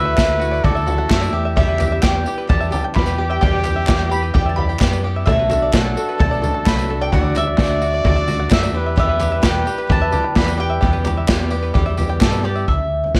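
A wistful, bittersweet stretch of indie folk opens with a round, double-strung mandolin melody, together with a close-miked, classical-style trumpet with light vibrato as a second line, a boxy picked ladder-braced acoustic guitar, a twangy fingerpicked banjo tucked in the background, and a dark, punchy fingered electric bass. At 0.2 seconds an up-front, roomy drum kit played with bundle sticks arrives with very quiet, crisp handclaps and a bright, jingly tambourine, as the chords move through Dadd9, Em and Bm7. Light reverb and small room ambience sit over a worn cassette-tape sound with warbly pitch drift.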